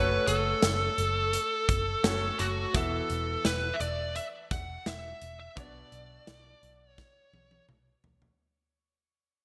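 In a straight 4/4 feel, this nostalgic, uplifting 1980s-style pop fragment fades out throughout as a dark, compressed fuzz lead guitar carries the melody through distortion, shimmer reverb and delay over a clear, polished concert grand piano with shimmer reverb, a round, foam-muted picked electric bass, and a punchy, up-front studio drum kit with gated reverb that enters at 0.3 s and closes with a fill from 7.0 s, all moving through F#m, Esus2 and Bm in a bright digital production bathed in lush hall reverb.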